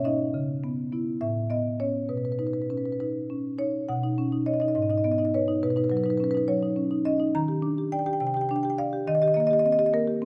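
Flowing and reflective, this contemporary classical piece for solo marimba moves in an unhurried 6/8 with a straight feel. Played with medium mallets on padauk bars, the marimba has a woody, full tone, close-miked and dry, sitting up front in a recital hall with moderate reverb. Its range spans from G#2 up to A#5, giving the single instrument both a deep low end and high upper notes. The opening passage moves through C#m7, Aadd9 and Badd9 before a second section begins at 3.9 seconds, shifting through G#m, Badd9, D#maj7, Csus2 and D#6. The colorful added-note and suspended harmonies give the music a gently searching quality, and the clip, cut from a longer piece, ends at 10.3 seconds.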